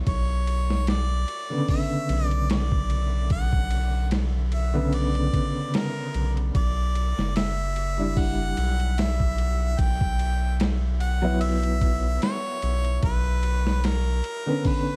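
An upright piano with a woody, vintage tone and a tremolo opens this smoky, hypnotic trip hop excerpt together with a deep, round analog bass that sits up front, the harmony resting on Bmadd9 in B harmonic minor at a slow 74 BPM with a light sixteenth-note swing. Almost at once a sampler-style boom bap kit enters, gritty and pitched down, with a thumpy kick, a high-tuned snare, hi-hat and ride cymbal set in a small room reverb. Over this, a bright harmonica carries the melody with light vibrato and scooped notes, its punchy pop-style phrases trailed by tape echo. The chords move to Em7 at 6.6 seconds and F#7sus4/B at 9.8 seconds before returning to Bmadd9 at 13.0, and the bass drops out at 14.2 seconds while piano and harmonica carry on to the end. The dark production adds a layer of vinyl crackle.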